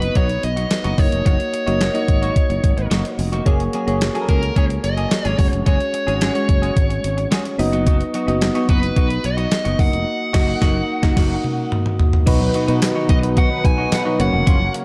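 Romantic and uplifting, this 1980s-style pop passage, cut from a longer piece, sets a dark, overdriven lead guitar melody with digital delay over soft, round electric-piano-like synth keys, a compressed clean electric guitar riff with lush chorus, and a growly, sustaining fretless bass. A clean 12-bit drum machine sits up front with a thumpy kick, fat snare, hi-hat, tambourine, toms and crash, punctuated by a band accent and a drum fill before 12.3 seconds. There, a very quiet, warbling unison pad and mellow, brassy synth stabs set in the background join as the harmony moves from B to F#maj7, all wrapped in light reverb and a dark, warm production.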